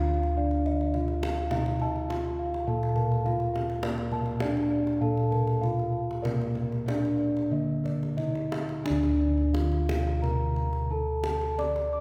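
A shimmering, hypnotic Javanese gamelan passage in D pelog opens at once with a dark, mellow bronze metallophone carrying the melody over round, close-miked bossed gongs that hold the bass up front. Above them, a second ringing metallophone with padded mallets spins arpeggios alongside soft bossed gongs played with padded beaters, which drop out at 8.6 s. From 0.2 s a tight kendang struck with hard hands sits distant in a large hall's long reverb, moving in a straight 4/4 between 88 and 104 BPM before the music turns to a new section at 8.9 s, in this brief cut from a longer piece.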